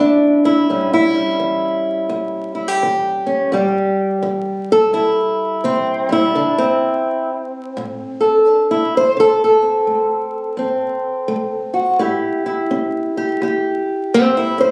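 A fingerpicked old ladder-braced acoustic guitar carries this gritty, soulful acoustic country blues alone, sitting up front with a warm, woody, boxy tone and the character of old strings. The playing moves at 85 BPM in 4/4 with a loose swing on the eighth notes, ranging from E2 up to C5, and the tuning sits slightly flat of standard at A4 = 436 Hz. The harmony moves from D to A7, shifts to a D7 voiced with its third omitted at 6.3 seconds, and returns to A7 near the end. The sound has the feel of a phone capturing the performance in a small room, with a moderate, short reverb, a club-like ambience and a layer of vinyl crackle adding to the worn, intimate atmosphere. This 14.7-second passage is cut from a longer piece.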